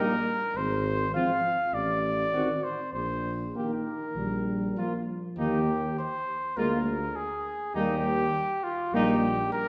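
A warm, up-front trumpet carries the melody of this noble, triumphant brass quintet passage in Eb major, moving at a steady 101 BPM in straight 4/4 and reaching from F4 up to F5. Beneath it, a clear second trumpet with light vibrato sits distant and roomy, while a French horn with vibrato and a smooth top and a mellow trombone with a soft attack fill in the accompaniment. A bright bass trombone with light vibrato enters at 0.6 seconds, heard at a distance as it anchors the low end. The harmony moves from Eb through a diminished chord and a dominant seventh before settling back on Eb, giving the phrase a stately, resolving arc. Heard from further back in a recital hall with generous reverb, this short cut from a longer piece sounds spacious and ceremonial, with the lead trumpet last to fade at 9.7 seconds.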